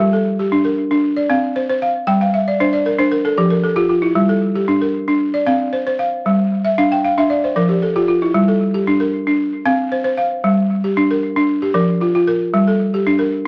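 Reflective and flowing, this west african traditional piece, cut from a longer work, features a solo balafon struck with hard rubber mallets, its woody, buzzing tone sitting up front with a touch of tape echo. Fills surface around 2.1 s and 6.6 s over a steady, straight pulse, and a new passage opens at 8.3 s. The close, dry, 1970s-style studio sound has a light reverb and a vintage, band-limited character.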